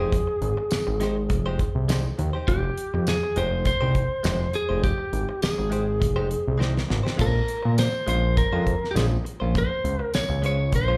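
Smoky and soulful, this straight-eighth soul blues excerpt sounds like a live club gig heard through the venue's PA, with a lightly driven, slightly broken-up lead guitar carrying the melody over bright, twangy stabs from a clean, direct-recorded electric guitar, both touched with slapback echo. A fat, detuned sawtooth bass with a filter sweep sits up front beside a damped, dry 70s drum kit of tight kick, fat snare, hi-hat, crash and tambourine. A drum fill at 6.6 seconds leads the harmony from Fm9 to Bbm9 at 7.2 seconds.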